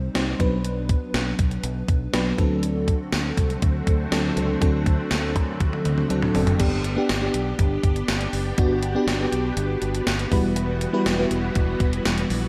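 A hall reverb gives this glossy, romantic 1980s-style pop cut, taken from a longer piece, a big arena sound, moving at 121 BPM in a straight 4/4 in G major. An FM electric piano layered with a soft pad carries the accompaniment, its dreamy, dark, full-bodied tone treated with chorus, tremolo and slapback echo. A punchy fingered electric bass holds the low end beneath it. Up front, a gated digital drum machine lays down a thumpy kick, gated reverb snare, hi-hat, tambourine, crash and toms, and a drum fill from 5.6 to 6.6 s leads into the second section. From 2.6 s a string machine voicing violins adds shimmering, slow-attack sustained chords with ensemble chorus, while the harmony moves from Bm to D7, then to G and Emadd9.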